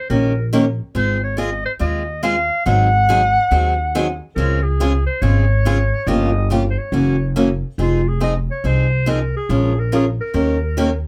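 Acoustic string swing in the jazz manouche style, this fiery excerpt in F minor moves at 140 BPM with a swing feel, as a roomy jazz clarinet sings the solo melody with vibrato and scooped notes over a bright, boxy picked steel-string guitar with audible finger squeak and a woody, thumpy pizzicato upright bass on gut strings, all under light reverb as the harmony travels from Eb7 through Dbmaj7 and Gb7 to Fm7 at 7.8 seconds.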